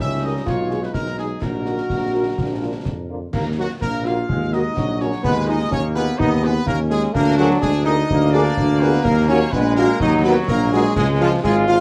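Stern and martial, this minor-key military-style march for wind band strides along at 126 BPM in a straight 2/4. An up-front, warm tuba anchors the bass beneath an equally warm euphonium second line with light vibrato, while a clear trumpet section carries the melody, a bright, tight trombone section holds sustained chords, and a soft-attacked French horn section joins in the background at 0.2 seconds. Snare, bass drum and dark clash cymbals sit back in a small acoustic space, all heard through a moderate large-studio reverb and a worn, warbling old cassette tape with pitch drift, in this brief cut from a longer piece.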